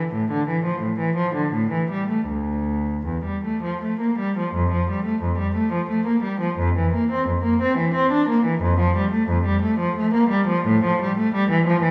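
A single bowed cello opens the recording and carries it through to 11.9 s, its nasal, reedy gut-string tone played in period style. This is a classical, baroque-style suite movement in triple metre, with a radiant, flowing mood and a freely breathing rubato feel. The one player ranges from D2 up to D4. Around 4.5 s the harmony turns toward a brighter centre as a second passage begins. A wet recital hall reverb surrounds the cello, placing the listener further back in the room, and the clip is cut from a longer piece.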